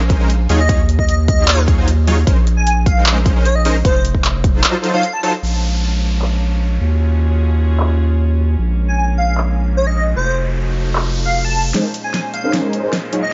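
Future bass in Bb minor at 152 BPM with a half-time feel, this dreamy, lush clip is cut from a longer piece and opens straight into a drop. Huge, detuned supersaw chords carry the riff through the first 5.3 seconds with analog chorus, a low-pass filter and sidechain pumping, while a thick, saturated sine sub bass sits up front and pumps beneath them until 11.7 seconds. A punchy, overdriven electronic kick joins a big-room kit of huge snare, metallic hats, handclaps and crash, and an airy lead with a noise layer, vibrato and delay floats above in a high register. From 5.4 seconds, a rich chamber string section bowed sul tasto brings soft, floating sustained chords over progressions such as Ebm11, Bbm7 and F7b9, joined by an electronic downlifter and riser. The final stretch builds with a drum fill, a filter sweep on the returning supersaws and risers, all set in a digital ambience that rolls off the highest frequencies.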